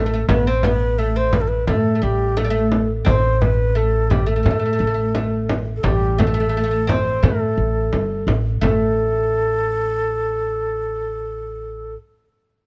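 A steady 4/4 pulse at 86 BPM with a straight feel carries this hypnotic, soulful excerpt from a Turkish makam ensemble, cut from a longer piece and tuned to A4 = 441 Hz. A reedy ney leads the melody between G4 and C5, its end-blown cane tone airy and straight with a crisp attack, heard both up front and with a distant quality. Beneath it, a bright oud plucked with a plectrum carries a second line from G3 to C4, its fretless double strings giving a woody ring. The upright bass sits up front with dark, thumpy gut-string pizzicato between G1 and A2, while a compressed, saturated frame drum struck with hard hands plays from 0.3 to 8.9 seconds. The sound is close and detailed with little reverb, moving from an opening section into a second one at 8.6 seconds.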